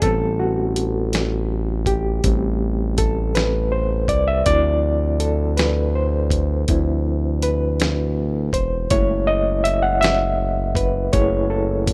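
A dry, rough home-demo sound frames this yearning, late-night slow R&B fragment in 6/8 at 54 BPM, cut from a longer piece. An overdriven, barky reed electric piano played through a combo amp with fast tremolo takes the solo across the whole 11.9 seconds, moving through Am9, Dm9 at 4.5 seconds and F#m9 at 8.9 seconds. Underneath sit a smooth, sustained sawtooth-and-triangle synth bass and a gritty, compressed sampler-style soul kit with a thumpy kick, medium-tuned snare and hi-hat.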